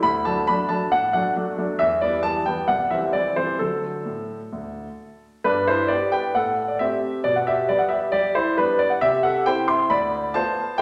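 A straight 4/4 pulse at 135 BPM drives this cheerful, elegant classical-period piano sonatina in G major, a short passage cut from a longer piece. A single warm concert grand plays solo throughout, sitting up front with a natural tone and deep bass across a range from C2 to C6. The sound is wrapped in a wet recital hall reverb, and the harmony moves from D and Em toward G and Am7 when a new section begins at 5.5 seconds.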